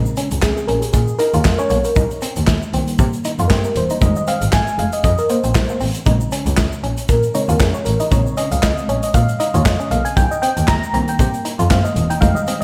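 A lush, dreamy FM electric piano with a soft pad layer takes the solo throughout this slick, late-night early-eighties boogie funk excerpt, its chorus and slapback echo sitting over a slightly broken-up, picked guitar riff with analog chorus, a woody, bowed double bass with light vibrato, a punchy, up-front studio drum kit with handclaps, hi-hat, kick and snare, and a very quiet, grainy egg shaker, the whole mix set in a wet recital-hall reverb for a big arena sound.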